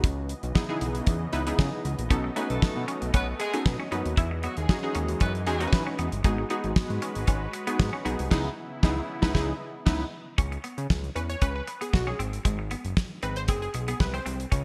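Bright 1980s-style digital production with light small-room reverb frames this slick, danceable cut of early-eighties boogie funk. A dry, damped drum kit with a fat snare and gated reverb sits up front beside a thick sawtooth analog bass and a punchy, detuned polysynth comp with chorus, while a smooth, warbling pad hovers in the background until 10.4 s. A twangy, slightly broken-up electric guitar riff enters at 2.1 s, a tight horn section with light vibrato and octave doubling adds a brief second line, and after a band accent the passage turns to an analog polysynth solo over the closing chords.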